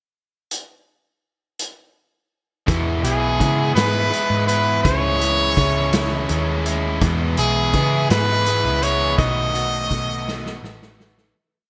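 A 6/8 groove on a punchy, small-room vintage drum kit with gated reverb opens this upbeat, carefree indie rock piece, joined at 2.7 seconds by a double-tracked, overdriven guitar strumming dark chords through lush chorus and a round, hollow-body bass playing a syncopated riff, while from 3.0 seconds a brilliant, forceful trumpet with light vibrato carries hook phrases over bright 1980s-style digital production, before a fade-out and a closing drum fill end it.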